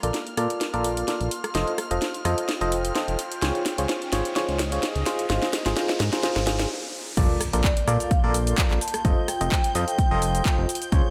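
A biting FM electric piano riff, chorused, tremoloed and filtered with digital delay, drives this euphoric piano house excerpt at 128 BPM, pumping with a fat, detuned analog bass, a shimmering string-machine violin bed and a lo-fi, warbling tape-like pad set in the background. An overdriven house drum kit with a cracking snare, bright hats, handclaps, cabasa and rim clicks fills the build-up while a riser climbs from 2.2 seconds over Bbmaj7, F7, Dbmaj7 and Ab chords. After a brief stop, the drop lands at 7.2 seconds with an impact and a punchy electronic kick, and a ringing, band-limited vibraphone melody with delay enters at 7.6 seconds, all inside a lush hall reverb.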